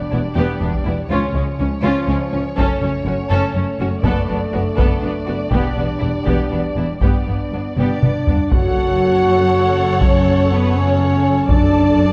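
In a 6/8 pulse, this relentless, epic cinematic excerpt builds for its first 8.5 seconds as a distant, expressive violin section sings the melody over sustained roomy French horn chords, a lush second violin line, focused viola accompaniment, woody cellos and smooth double basses, while a heavy, saturated taiko ensemble drives from 0.7 seconds toward a drum fill at 7.8 seconds and round, soft-mallet timpani sound in the background of a dark scoring-stage reverb.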